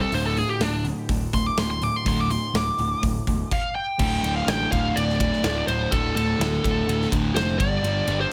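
Driving and menacing, this short hard rock clip, cut from a longer piece, moves at 124 BPM in a straight 4/4. A smooth overdriven lead guitar sits up front with a tape echo, playing a solo over the first 4 seconds and carrying the melody throughout. Beneath it, two sludgy distorted guitars churn out a riff in the background, their picked, overdriven tone adding weight. A picked electric bass growls low, dark, round and punchy. A big acoustic rock drum kit, up front in a studio room, drives the track with a punchy kick, a medium-tuned snare, hi-hat, ride and crash cymbals, while the harmony moves from D5 chords to a closing G5 under light reverb.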